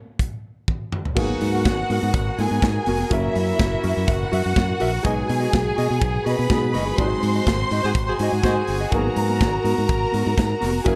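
A tight, up-front drum kit opens this sultry, glamorous disco excerpt at 124 BPM with a fill just before 1.2 seconds, where a warm fingered bass, lush distant strings with analog delay, a boxy dark baby grand, a clean tremolo electric guitar and nasal stopped French horns enter over chords moving from G#m9 through F#7, B6 and G#7, with a smooth pop horn section adding stabs during a band accent around 7.8 seconds, all in a dark, warm small-room production.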